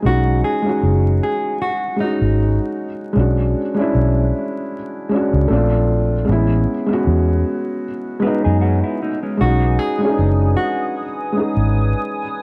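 A round, punchy electric bass sits up front in this dreamy, cosy hip hop excerpt, its foam-muted tone given a dark, amped edge by tube saturation. Alongside it, a felt-muted upright piano plays soft, boxy chords close to the listener, with its action noise clearly audible, moving from a rootless B6/9 through E13 over B, A#maj9 and Amaj9 before returning to B6/9. A fingerpicked nylon-string guitar carries the melody in a classical style, filtered and touched with analog delay, playing at the start and again from 9.4 seconds. A clean, fingered electric guitar adds a brief second line at 8.2 seconds. At 9.4 seconds, a hollow, flute-like pad with a detuned chorus shimmer brings sustained chords high above the rest. The swung sixteenth-note feel sits inside a moderate plate reverb, and the whole recording carries worn cassette warble, vinyl crackle and drifting pitch.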